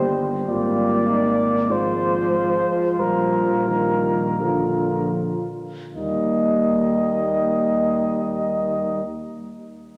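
A slow, lyrical hymn in Eb major for brass band opens with every voice sounding together: a mellow cornet sings the melody up front while a tight French horn section with soft attacks carries a warm second line beneath it. A dark euphonium and a mellow trombone fill in the accompaniment over a dark tuba bass, each voice shaded with light vibrato in a classical style, the cornet and lower brass with smooth tops. The rubato pulse of 37-52 BPM slows through the opening phrase until the music settles on Eb at 5.9 seconds, all of it bathed in a wet church reverb in this passage cut from a longer piece.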